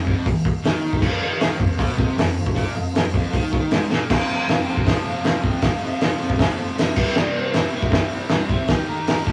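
Raw and swaggering, this garage rock cut drives at 156 BPM in a straight 4/4 around F, built on a bright, double-tracked fuzz guitar riff and an up-front, cloth-damped drum kit with muffled, dark cymbals, a fat snare and a tight kick, the whole kit saturated and gritty. A mellow combo organ with heavy vibrato holds very quiet sustained chords from 1.0 s, and after a drum fill at 3.9 s a dark, slightly broken-up slide guitar enters in the background with a melody at 4.1 s. The take has the rough character of a rehearsal room, with a moderate stone-room reverb and tube saturation, and its chords move from F to C and then Eb near the end.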